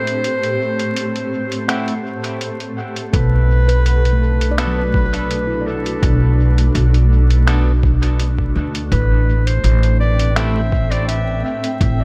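A woody, plucked upright bass sits up front in this spacious, hazy ambient dub cut, arriving with a muffled, thumpy, overdriven kick at 3.1 s beneath a distant, roomy clarinet melody with dub echo, a cloudy, detuned granular pad of blurred sustained chords, pitched-down lo-fi finger snaps and hi-hat, and, from 1.7 s, a ringing handpan and clean, bright semi-hollow guitar stabs with vibrato sitting in the background over a bed of vinyl crackle.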